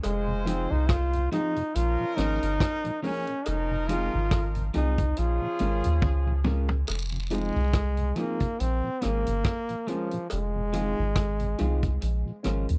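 A bright, punchy trombone with dub echo carries the melody over a clear horn section, as a deep, round sub bass and an up-front vintage drum kit of hi-hat, kick, rim click and toms set a laid-back, serious roots reggae groove, dotted with cowbell and a jawbone-type rattle. Soon after, a flute-like tonewheel organ with chorus vibrato, slow rotary speaker, tube saturation and tape echo joins the background, followed at 0.5 s by a slightly broken-up electric guitar with dub echo and boxy, woody upright piano stabs, while the chords move between Fm7 and Bbm7. The horn section stops at 6.4 s, a drum fill leads into a trombone solo from 6.9 s, and the dry, close 1970s-style studio sound keeps this cut from a longer piece intimate.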